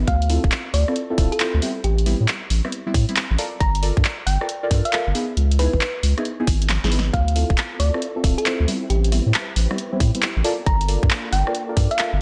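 A thick, saturated sub bass pumping under the sidechain opens this bouncy, soulful two-step garage excerpt with its swung sixteenths. It is joined almost at once by a tight, layered kick up front, a punchy analog drum machine of handclaps, hi-hat, rim click and snare heard in a large room, and deep mellow chord stabs softened by chorus, phaser and a moving notch. A round, tine-like thumb-piano-style pluck warbles through chorus and delay over minor ninth chords, before a short drum fill ushers in a silky string machine at 7.1 seconds, pumping in the background with ensemble chorus alongside the rest.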